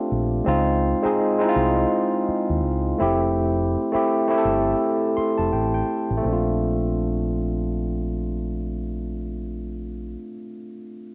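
R&B with a soulful, warm mood, this short excerpt from a longer piece moves with a swung sixteenth-note feel. A barky tine electric piano carries the accompaniment, its clean tone heard through a combo amp and colored by cassette tape, sitting up front throughout. Beneath it, a deep dub fingered electric bass adds a dark, round, amped low end with tube saturation, also placed up front. The harmony moves through major-ninth chords, Dbmaj9 and Fmaj9, with an electric piano fill starting at 4.8 seconds before the music arrives on Bbmaj9 as a new section begins at 6.2 seconds. Light reverb and the character of a home cassette recording give the sound an intimate, lived-in quality.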